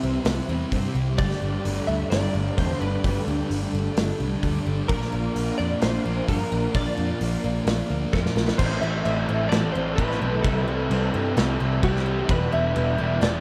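Blissful and wistful, this excerpt of shoegaze and dream pop rock moves at 130 BPM in a straight 4/4, tuned to A4 = 439 Hz. A thick fuzz guitar with distortion and subtle chorus drives a riff alongside an overdriven garage guitar with reverse reverb sitting in the background, both over a round, foam-muted vintage electric bass. A loose indie drum kit enters at 0.3 s with a punchy kick, dark cymbals and a rolled-off top in a pumping studio room, adding a fill just before the second section begins at 8.6 s. Underneath, a very quiet twelve-string acoustic guitar picks shimmering, octave-doubled arpeggios while a warbling vintage string machine holds sustained cello chords. From 1.2 s a clean, compressed electric guitar recorded direct carries the melody through ensemble chorus and tape echo, as the harmony travels from C, Gsus2 and Bb to Am7, C6 and Em7 under light studio reverb.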